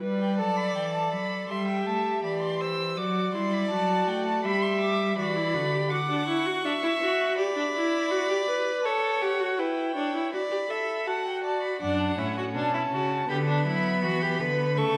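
A baroque-style classical fugue for string quartet, elegant and lively at 81 BPM in G major, moving to D major at 11.8 seconds, in a short cut from a longer piece. A high violin carries the melody with vibrato and expressive portamento, sounding distant, while a second, up-front violin with a focused, smooth top plays the second line and a rich viola fills in the accompaniment. A clear, even cello holds the bass, falling silent at 5.9 seconds and returning at 11.8, all set in a wet recital hall reverb.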